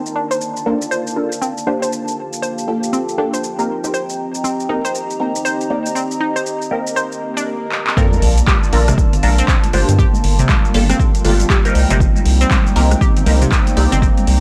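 Deep house at 119 BPM in C dorian, hypnotic and deep, where hollow, flute-like pads, a moody background ambient pad, a bright analog pluck arpeggio and a muted phaser-washed dub chord stab under a filter sweep all pump over Bbmaj7, Gm9 and Cm7 alongside metallic overdriven hats, handclaps, rim click and shaker, before a swell and sub drop at 7.3 seconds leads into the 8.0-second drop, where a punchy overdriven kick, very quiet high-tuned congas and an up-front round analog bass arrive in a dry, gritty mix with transformer saturation and vinyl crackle.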